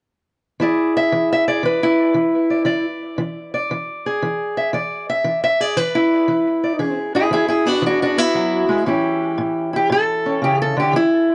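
A lone fingerpicked steel-string acoustic guitar opens at 0.6 seconds on an E7 chord, its dark, woody parlour tone and old strings sitting up front with a touch of analog delay. This swaggering acoustic country blues excerpt moves at 116 BPM in a swung 4/4 in E mixolydian, shifting to A7 at 8.9 seconds before breaking off at 11.3 seconds. The dry, gritty recording places the guitar in a small room with a muffled, rolled-off top end.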